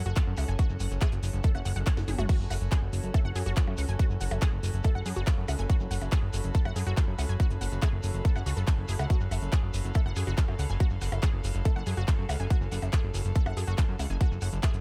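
A morphing wavetable pad, a fat, detuned sawtooth bass up front and a distant, reedy string section open this hypnotic, alien psychedelic trance excerpt in F# harmonic minor at 141 BPM, soon joined by a bright, warbling unison pluck riff with tape echo, a punchy kick, a tape-toned techno kit with cracking snare, smooth hats and a fill at 2.0 seconds, and a grainy shekere in the background.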